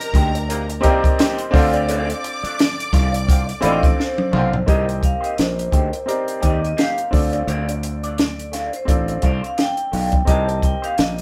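A swung sixteenth-note groove from a punchy, up-front cocktail drum kit drives this smooth, bittersweet 1970s-style soul fragment, with overdriven, foam-muted fingered bass, a clear, short-sustain grand piano and a slightly broken-up wah guitar riff through a small old amp, while a lush bowed violin section colours the opening until 4.3 seconds and tight vintage horn stabs until 4.6 seconds, a drum fill from 4.0 seconds leads into a new section, and a dark, ringing hard-mallet vibraphone carries the melody from 3.7 seconds over a very quiet, mellow soft-mallet vibraphone texture, the band heard together in one lightly reverberant room.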